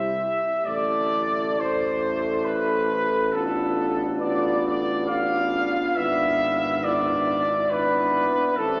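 In a rubato 3/4 at 69 BPM, this tender, hymn-like classical piece for brass band in A minor carries the warm, lightly vibrato trumpet section up front on the melody while a dark, soft-attacked French horn section sings a second line beneath, a mellow euphonium and a clear, distant trombone fill in the accompaniment, and a tuba with light vibrato anchors the bass, all bathed in a long cathedral reverb as the harmony moves from C through Am and Bm7b5/A to E7/G# before the passage is cut off at 8.8 seconds.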